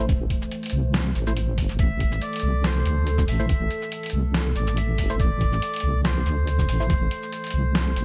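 A half-time 4/4 groove at 141 BPM, swung at 54% on the sixteenths, opens this brooding deep dubstep excerpt in A minor, resting on a single Am chord. A compressed, pitched-down electronic kick with a muffled, thumpy sound joins a sampler-style trip hop kit of hi-hat, shaker and medium-tuned snare, both set in studio reverb. Up front sits a deep, soft wobble bass, a detuned blend of sawtooth and sine with a fast attack, sustained and treated with chorus. Around it, a moody analog pad holds slow-attack chords thickened by a sub octave, while a hollow, organ-like stab with a mellow, wave-folded bite adds decaying hits through chorus and phaser until 6.9 s. From 1.8 s a close-miked melodica carries the melody, its reedy, breathy and nasal tone sent into dub echo. Light digital ambience and vinyl crackle wrap the whole in a dark production.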